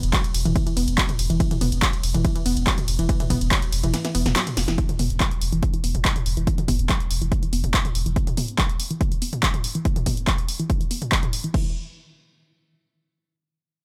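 A straight 4/4 pulse at 142 BPM drives this hypnotic, industrial peak-time techno excerpt, built on an overdriven, layered electronic kick up front and a punchy, tape-toned analog drum machine of snare, handclaps, hi-hat, ride, crash and toms, with sidechain pumping on the hats, toms and cymbals. A thick, saturated sine sub bass holds E1 beneath a warbling, lo-fi, detuned pluck riff between E3 and B3, coloured by chorus, overdrive, digital delay and sidechain pumping. The kick drops out for a drum fill at 3.9 seconds, and a filter sweep on a synth arpeggio sound runs from 4.8 to 11.5 seconds, all in a dry mix with little reverb.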